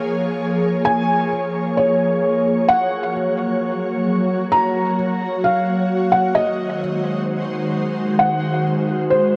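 Through a worn, warbling cassette haze with a long shimmering reverb, this ethereal, melancholic half-time hip hop fragment at 131 BPM sets an airy, detuned pad holding chords from 0.0 seconds under a soft, felt-muted upright piano melody that enters at 0.9 seconds with audible action noise and tape echo, moving through Bbm7, Gb and Ab7.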